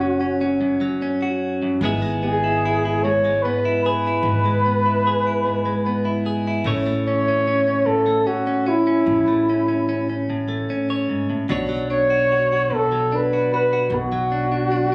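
An acoustic folk-pop ballad in a slow 3/4 at 74 BPM, reflective and heartbroken, where a mellow, whispered flugelhorn with vibrato and a soft attack carries an intimate, jazz-style melody up front over a bright, twangy, picked clean electric guitar and a woody pizzicato upright bass, moving from F#m through E/G# and A to Bmadd9, all caught on a phone in a room with light club reverb and compression in this short cut from a longer piece.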